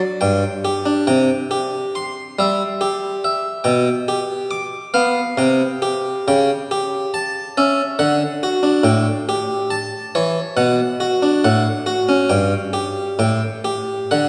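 In an unhurried 3/4 at 69 BPM, played with a free rubato, this serene, radiant baroque-style suite movement, cut from a longer piece, features a solo harpsichord with one set of strings sounding plucked, round and up front across a span from G2 to D6, its chords drifting from C through A7 and Bm to a suspended close, all bathed in a long, wet church reverb.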